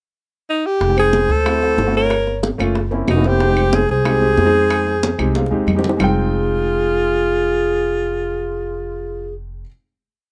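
A two-bar claves time line, bright congas with slaps and open strokes, and tight bongos in steady eighths drive this short, sultry Afro-Cuban jazz piece until the percussion drops out at 6.1 s, while a growly pizzicato upright bass plays an anticipating tumbao, an intimate baby grand piano adds syncopated rootless chord stabs and a fill, a clear, punchy alto saxophone leads up front with scooped, motif-based phrases, and a breathy, hollow jazz flute harmonizes mostly in sixths before everything settles on a final chord under light reverb.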